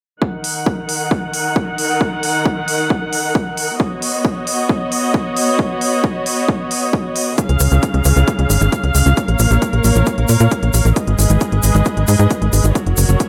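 A tight, punchy sequencer bass with a sawtooth, ring-modulated bite arrives at 7.5 seconds beneath dark, woody bowed strings that hold lush sustained chords through sidechain pumping and a low-pass filter, while an overdriven, heavy electronic kick and smooth hi-hats drive this euphoric uplifting trance excerpt from the start, and a grainy egg shaker joins in the background at 7.4 seconds.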